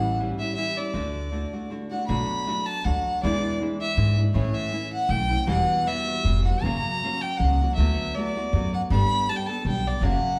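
A dark, earthy bowed violin with light vibrato carries the melody up front in this romantic, festive mariachi fragment in a swung, rubato triple metre, over fingerpicked classical nylon-string guitar and a woody, growly pizzicato upright bass, all played live together in one room and bathed in a wet, large studio reverb.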